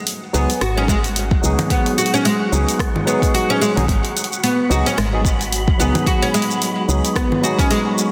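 An airy, breathy wind-like texture opens this meditative, hypnotic stretch of organic downtempo, quickly joined by a swung deep house kit of congas, hi-hat, rim click and shaker, a barky, lightly overdriven tine electric piano with chorus, delay and sidechain pumping, a bright, plectrum-plucked oud playing arpeggios through delay, and a round, dark FM bass with tube saturation. An up-front electronic kick enters at 0.9 s, and the parts hover on a single minor-seventh chord. A moderate concert-hall reverb surrounds the dense, heavily limited modern master.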